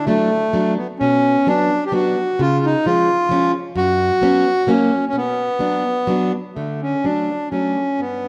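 A lilting 3/4 pulse at 129 BPM carries this alpine dance-band excerpt, its eighth notes lightly swung and its timing loosened by rubato, giving a bouncy, festive lilt in B minor. The accordion leads the melody from the start, a reedy single-reed voice with dry tuning and a clear, boxy small-room character, placed up front in the mix. From 0.1 s, a picked, plugged-in steel-string acoustic guitar supplies the accompaniment with a warm parlour tone, also close and present beneath the tune. The harmony moves from D through B minor and C# to a suspended F# that resolves before settling back on B minor. A new section begins at 6.6 s, returning to D as both instruments play on until the cut. A moderate scoring-stage reverb gives the pair a sense of space.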